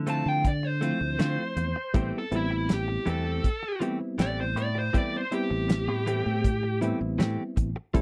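A dark, smooth overdriven lead guitar carries a smoky, soulful solo through this short straight-eighth soul blues excerpt, sounding until 6.8 seconds over a Dm7 that moves to Am7 at 1.9 seconds. Beneath it, a cloth-damped, thuddy drum kit with a fat snare and tight kick sits up front, along with a round fingered bass, clean scooped stabs from a direct-recorded electric guitar, and a barky, reedy electric piano with overdrive and harmonic tremolo. The sound is dry and close, in the manner of a 1970s studio recording.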